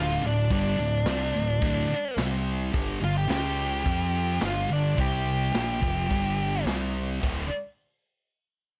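Garage rock, swaggering and raw, in a straight 4/4 fragment cut from a longer piece: a dark, up-front octave-fuzz lead guitar solos until about 6.6 s over a thick, double-tracked fuzz guitar riff and a growling, overdriven picked electric bass, while a vintage drum kit with a punchy kick, medium-tuned snare and rolled-off top enters at 0.5 s in a small, natural-sounding room, with light reverb on the mix.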